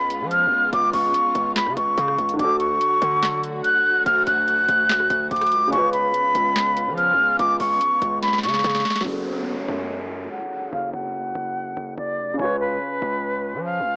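A menacing, brooding trap hip hop cut with a half-time feel, where an airy, vibrato-laden jazz flute carries the melody up front through lo-fi cassette haze and plate reverb, over dark bowed strings that stop at 9.0 seconds, a punchy, saturated 808 bass, a booming dry drum machine with crisp snare, metallic hats and handclaps that fills at 8.2 seconds before dropping out, a mellow, deep piano entering at 2.3 seconds, and a downlifter opening the second section as a filter sweep unfolds.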